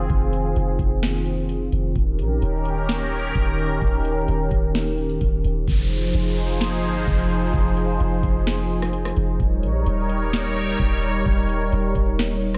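Spacious and hazy, this short cut from a longer atmospheric cloud-rap track moves at 129 BPM in a half-time F minor feel, with a bright, detuned sawtooth pad pumping through chorus over Fm7 and Eb7, a round, dark 808-style bass, and a booming, overdriven analog drum machine with deep kick, crisp snare, metallic hats, rim clicks and crash, while an electronic downlifter drifts through from 5.7 to 9.4 seconds in a light digital ambience.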